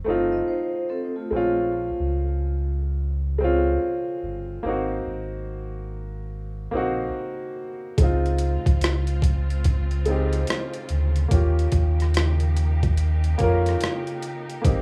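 A woody, vintage-toned upright piano with a cassette-tape haze lays down the accompaniment in this nostalgic, melancholic lo-fi hip hop fragment at 72 BPM with a swung 16th feel. It is grounded by a deep, sustained sine sub bass with octave and joined briefly from 0.3 to 1.6 seconds by a metallic, ringing vibraphone with tape echo. At 8.0 seconds, gritty, overdriven boom bap sampler drums with a thumpy kick, hi-hat and rim click enter alongside soft, bowed studio strings holding chords over a progression that moves from F7 and Bbm7 toward Dbmaj7 and Eb7, all in a rough home demo mix with a small room sound.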